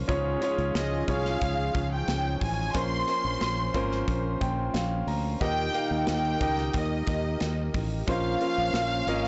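This short cut from a longer piece sounds blown-out and overdriven, with a dull top end and the close feel of a small room. It is driving, earnest piano-driven pop in a straight 4/4, moving through Db, Bbmadd9 and Eb chords. An intimate concert grand carries the accompaniment up front, its action noise audible and its deep bass ringing with long sustain, while a round, punchy fingered electric bass sits beside it and a soft sawtooth analog pad with chorus glows in the background. An airy, polished studio drum kit of hi-hat, punchy kick and medium-tuned snare comes in at 0.1 seconds, and a lush bowed violin section takes the melody from 0.8 seconds with smooth vibrato. The piano plays a fill from 4.1 seconds, and at 5.4 seconds a dark French horn section joins in the background with a second line, adding light vibrato in a classical style.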